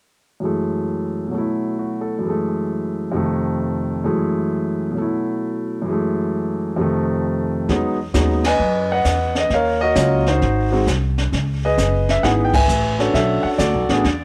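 Relaxed and swinging, this short jazz piano trio excerpt opens with a clear concert grand piano playing the melody alone, its tone up front with a deep low end and a faint cassette-tape colour. For the first stretch the piano circles through minor ninth and suspended dominant harmonies over a loose swing feel. At 7.7 seconds the upright bass and a brushed drum kit join as the music moves to a brighter major ninth chord and a new section. The bass is plucked, woody and thumpy, sitting close in the mix, while the drums bring dark cymbals, a high-tuned snare and a boomy kick, also tinged by cassette tape. The full band hits accents at 8.4 and 12.5 seconds before the excerpt ends, cut from a longer piece. A light reverb and small-room ambience give the whole trio the intimate, natural feel of a home recording on cassette.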